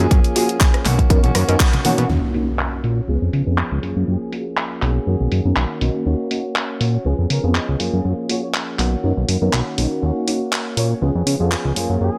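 A fat, saturated analog bass sits up front in this groovy, nostalgic filtered disco house excerpt at 121 BPM in Eb minor, with sidechain pumping and a low-pass filter, while a punchy electronic kick drives the opening until 1.7 s. A funky, chorused polysynth comp with phaser and a clean, direct-recorded electric guitar riff carrying 12-bit sampler grit ride a cycle of Gbmaj9, Bmaj9, Ebm7 and Db7 over a house kit of handclaps, hi-hat and rim click, with congas and tambourine in the background at first. An electronic impact lands at 2.1 s as a filter sweep moves across the drums, and a smooth-topped, jazz-style trumpet section joins in the background at 2.8 s, inside a light reverb.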